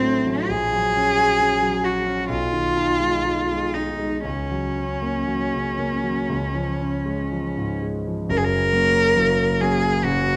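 Serene and warm, this romantic classical duo for cello and grand piano unfolds in F# major at a gently flexible tempo of 58-71 BPM, moving with expressive rubato in 4/4. A single bowed cello carries the melody up front, its tone rich and focused with vibrato, staying within a mid register from C4 to A#4. The concert grand piano, also up front, supplies the accompaniment with a warm, natural sound and deep bass that reaches down to F#1. The harmony drifts through F#/A#, G#m/B and F#/C# to a C# chord, then arrives on F# at 8.3 seconds as a new section begins. Moderate recital hall reverb gives both instruments a sense of space in this short excerpt cut from a longer piece.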